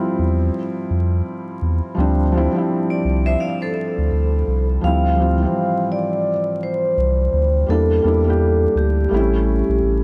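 Lo-fi hip hop at 84 BPM with a swung 16th feel in D minor, nostalgic and reflective, this cut from a longer piece sets a soft, dark felt-muted upright piano with audible action noise over a deep, round sine sub bass, both up front; a bright vibraphone struck with medium hard mallets adds a brief filtered second line through analog delay with fast motor vibrato from 2.9 s, before a ringing medium-mallet vibraphone with slow motor vibrato takes the low-passed melody from 4.8 s over Dm11 moving to Em7b5 and A7, framed by light small-room reverb and vinyl crackle.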